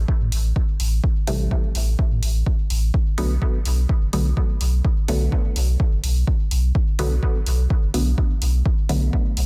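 A deep, clean sine sub bass sits up front in this hypnotic dub techno fragment, its smooth, dark tone pumping under sidechain compression as it moves between F#1 and A2. The punchy, layered electronic kick drives a straight 4/4 pulse at 126 BPM, joined by a layered electronic hi-hat at 0.3 seconds, both carrying studio reverb. At 1.3 seconds a filtered dub chord stab enters, a muted, detuned sawtooth with a plucky filter and mellow decay, colored by chorus, phaser, sidechain pumping and dub echo. Set in B phrygian, the harmony holds off any chord until a Bm7 settles in at 2.9 seconds. Digital ambience lends a cavernous space, and the dense, heavily limited modern master keeps the cut-from-a-longer-piece groove tight and loud.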